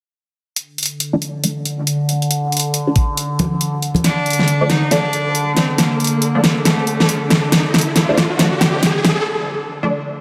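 Deep dubstep at 138 BPM in D minor, with a half-time, swung feel and a brooding, meditative mood, cut from a longer piece. A resonant drone with moving overtones, treated with chorus and phaser, holds sustained chords beneath muted, nasal dub chord stabs that carry a moving notch and dub echo. Overdriven, up-front drums bring a huge snare and bright hats, while a knocking kick lands only briefly around 3.0 seconds before dropping out and soft-handed, saturated congas step in. At 4.0 seconds a clear, focused bowed cello with vibrato takes the melody through a build-up, joined by a flickering, grainy texture in the background, a drum fill, and an electronic riser from 5.5 seconds. The build gives way to a short break at 9.3 seconds, all set in a lush hall reverb.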